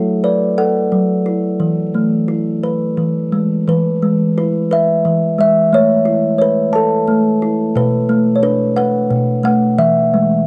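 A woody, mellow kalimba plays alone from 0.0 to 10.5 seconds in this tender, gentle children's piece, cut from a longer work and moving in a rubato 6/8 at about 59 BPM. Its thumb-plucked notes ring up front across a span from B2 to A5, drifting through Dadd9/F#, E, A and Bm7 as the music shifts into a second section at 3.7 seconds. A moderate studio reverb surrounds it, and the whole recording carries the worn, warbling pitch drift of old cassette tape, tuned slightly sharp to A4 = 441 Hz.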